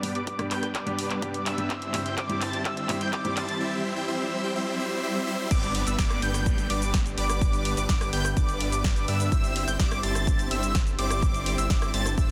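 Huge, bright supersaw chords lead this anthemic, triumphant festival progressive house excerpt at 126 BPM in G major, their filtered riff pumping under sidechain and trailing dub echo as a build-up with a drum fill and an electronic riser in the background drives toward the drop at 5.5 seconds. A present grand piano plays accompaniment until 3.3 seconds, while a warbling, vintage unison pad holds sustained chords in the background and a bold, detuned unison lead spins high arpeggios with vibrato, analog chorus and echo. A punchy, up-front electronic kick enters at 0.3 seconds beside a layered house kit of crash, handclaps, bright hats, rim click, shaker and snare, and a thick, saturated detuned saw bass joins at the drop, all set in a lush hall reverb within a dense, heavily limited modern master.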